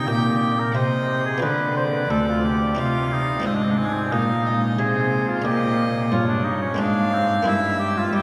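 A nasal, bowed cello with gut-string tone carries the bass up front beneath a rich, reedy period-style violin melody and a warm, roomy oboe second line, while a very quiet buff-stop harpsichord adds an airy, muted, lute-like accompaniment in this flowing, introspective baroque-style sonata movement in triple time, cut from a longer piece and bathed in a wet cathedral reverb that places the ensemble further back in the room.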